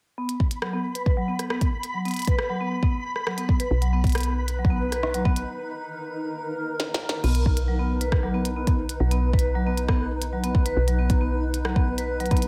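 Wistful and playful, this IDM excerpt sets dark, ringing vibraphone arpeggios with slow motor vibrato under a filter sweep and delay, joined by a deep, up-front electronic kick, a glitchy kit of tiny snare, clicky hats, rim clicks and crash in a large-room sound, and a brief flickering, grainy texture, before a soft, round FM bass enters at 3.7 seconds, a blurred, evolving granular cloud pad comes in from 4.3 seconds, and a break capped by a drum fill gives way at 7.2 seconds to a new section in light digital ambience.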